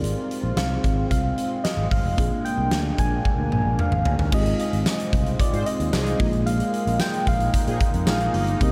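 A huge arena drum kit with a punchy kick, fat snare and bright cymbals sets a straight 112 BPM pulse in this glossy, nostalgic 1980s-style pop fragment, joined by a growly fretless bass, a round FM electric piano tucked in the background and an evolving, warbling sawtooth pad moving between Ab6 and Bb7 chords. At 0.6 seconds a gentle, keys-like FM synth lead enters with chorus, vibrato and tape echo, and a drum fill arrives just before the second half. From 5.5 seconds, mellow, brassy synth stabs colored by phaser and chorus sit quietly behind the other parts, all bathed in a dreamy, reverb-soaked ambience.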